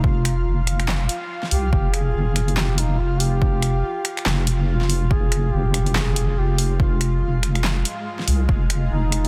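A deep, chorused wobble bass with tube saturation sits up front in this dark, meditative deep dubstep fragment, under a mellow, scooping duduk melody with vibrato and dub echo, a blurred, evolving granular cloud pad holding sustained chords, and a swung half-time groove of a punchy overdriven electronic kick and an up-front deep house kit of finger snaps, handclaps, hi-hat and a fat snare that joins at 0.3 seconds, all in a dense, heavily limited mix.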